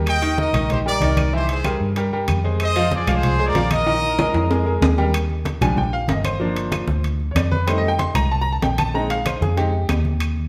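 Salsa at 189 BPM in Eb major, joyful and danceable, with a punchy trumpet section carrying the melody up front until 4.8 seconds, then a bright, worn concert grand piano taking a solo from 5.1 seconds over a dark, round, foam-muted electric bass, ringing low-tuned congas, metal-shell timbales, and woody claves in the background, with a drum fill from 3.9 to 5.1 seconds, all set in a large studio reverb.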